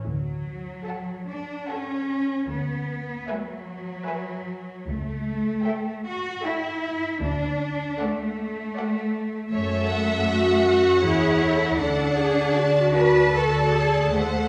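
A slow romantic movement for string orchestra in D major, this serene passage moves in a rubato 3/4 at around 72-80 BPM and is cut from a longer piece. Cellos and double basses open the passage together at 0.0 seconds, the cellos up front and focused while the basses sit distant with only light vibrato. At 0.9 seconds the upper strings join: a violin section carries the melody between C#5 and A5, a second violin section traces a smooth-topped second line beneath it, and violas fill in a close, lush accompaniment. The harmony drifts gently from D through E7/D, A7/C# and F#m7 before settling back on D. All the sections play bowed with vibrato in a reverberant recital-hall space, giving the ensemble a glowing, enveloping sound.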